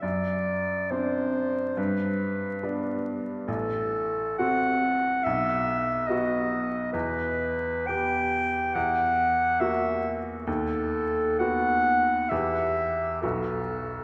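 A lush church reverb with a 3.4-second tail and a faint vinyl crackle surround this yearning, elegiac Romantic duo in E minor, moving at 69 BPM in 4/4 with a free, rubato pulse. A mellow, soft-attacked clarinet carries the melody between A4 and G5 over a bright, brilliant baby grand piano whose long-sustaining accompaniment reaches down to A1. Both instruments sit up front through a progression that drifts from D7/F# and G toward Em and closes this short passage on B5 at 13.2 seconds.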